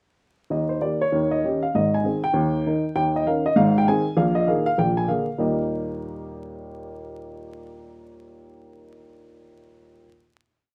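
Swung eighths drive this brisk 4/4 stride piano number at 197 BPM, giving it a swinging, exuberant lift from the first beat. A solo warm upright piano carries the whole short piece in Eb major, tuned to A4 = 439 Hz. It pairs a single-line melody with a stride bass, covering a range from Ab1 up to Ab5 with a woody, up-front tone. The harmony moves through Eb, Eb7 and Ab, then Bb7sus4 resolving to Bb7, before settling on a final Eb chord that spans 5.4 to 7.8 seconds, and the piano part ends at 10.1 seconds. A short, wet club reverb places the playing in a club, and a layer of vinyl crackle gives it the feel of an old record.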